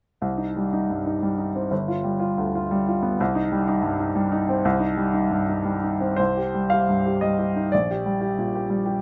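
Brooding and stormy, this fragment of a longer romantic character piece for solo piano unfolds in 3/4 with a rubato feel, its upright piano sounding clear, woody and polished, closely miked and up front in a dry space, ranging from G1 to F5 as it moves from Cm to a G7 that omits its third and back before a new section arrives at 6.2 seconds and settles on Gm/Bb.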